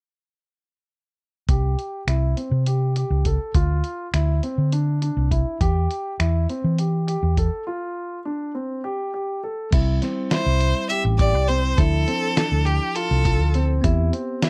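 Set in a straight 7/8, this driving, tense progressive band passage, cut from a longer piece, opens with a muffled, compressed sampler-style drum kit of thumpy kick, fat snare, hi-hat, finger snaps and crash cymbal pushed up front beside a dark, round, amped hollow-body electric bass, while a concert grand with deep low end plays arpeggios underneath. After a break at 7.7 seconds, a bell-like, clean tine electric piano adds bright accompaniment in the background from 9.7 seconds. A focused solo violin enters with a bowed, vibrato-laden melody at 10.3 seconds, all in a dry, close 1970s-style studio sound.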